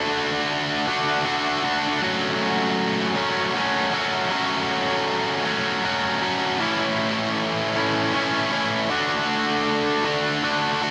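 A slow 6/8 sway at 52 dotted-quarter beats per minute carries this melancholic, cathartic rock fragment in F# minor, moving from D to F#m, then A and back to D. A lone electric guitar, bright, tight and distorted, picked and double-tracked, sits up front across the whole 10.9 seconds, ranging from A2 to F#4 through analog delay. A long plate reverb soaks the mix in a dreamy haze, cut from a longer piece.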